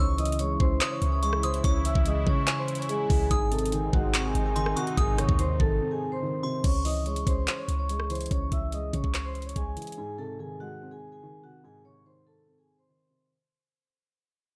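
Nearly dry, this trap-flavored hip hop excerpt, cut from a longer piece, sounds hard-hitting and menacing over a half-time feel. A ringing vibraphone with an airy tone carries the melody, while a dark, boxy grand piano accompanies with audible action noise and deep low notes. A clean, sine-like 808 bass booms underneath, and an up-front trap kit of knocking kick, metallic hi-hats, handclaps, rim clicks and crash cymbal drives the groove. In the opening half, an evolving, detuned sawtooth pad with chorus holds sustained chords, and a delicate FM bell tinkles in the background through chorus and tape echo. After a brief break, the pad and bell stop at 6.6 seconds as the music fades out, with the bass dropping away at 9.8 seconds and the drums at 10.0.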